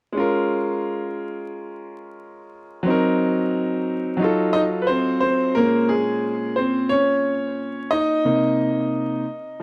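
A clear concert grand piano opens at 0.1 s, heard on its own and carrying everything in this short excerpt of a smoky, nocturnal hip hop piece. The tempo sits at 89 BPM in 4/4 with a 64% swing on the sixteenths, in Bb minor. Placed up front with a deep bass and a vintage character, the piano moves from Bbm7 through Cm7b5 and F7b9 before returning to Bbm7 at 5.6 s, where a new section begins as a piano solo, and it settles onto Cm7 at 8.3 s before the close at 9.6 s. A tape echo trails the piano, and a moderate studio reverb gives a modest sense of room. The dark production and vinyl crackle lend the whole recording a dusky, late-night texture.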